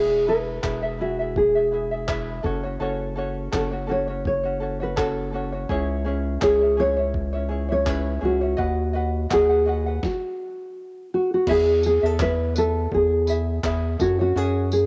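Carefree and heartfelt, this acoustic pop excerpt has an easy swing, with a woody, full-bodied nylon-string guitar carrying the melody up front over a lightly fingerpicked ukulele and a deep, round analog bass. A gritty, compressed sampler-style drum kit with a thumpy kick, snare, handclaps, tambourine and crash cymbal joins at 0.6 seconds. After a brief stop from 10.0 to 11.5 seconds, the music moves into a new section, and the whole track carries the muffled character of a home cassette recording with light reverb.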